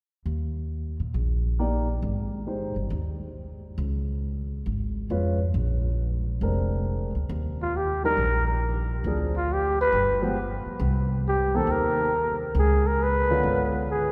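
Small-group swing-and-bop jazz with a relaxed, swinging mood, this fragment of a longer piece opens with a woody, growly pizzicato upright bass, adds a polished grand piano with long sustain at 1.6 seconds, and brings in a veiled, raspy bucket-muted trumpet solo with vibrato and scooped notes at 7.6 seconds, all bathed in the long, wet reverb of a church or concert hall.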